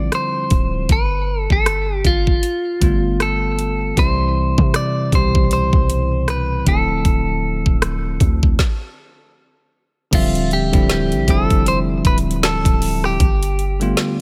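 Up-front trap drums drive this moody, longing contemporary R&B cut from a longer piece, with a knocking kick, woody snare and metallic hats at a slow 78 BPM with a 16th-note swing in D dorian. A clean, compressed picked electric guitar carries the phaser-tinged melody over a bright, bell-like tine electric piano heard through its built-in speakers, while a deep, boomy 808-style bass with a sine tone and noise layer decays underneath. The harmony moves through Dm11, G9, Cmaj7 and Dm9, and the groove stops at 8.6 seconds before a new section starts at 10.1 seconds in a dry mix.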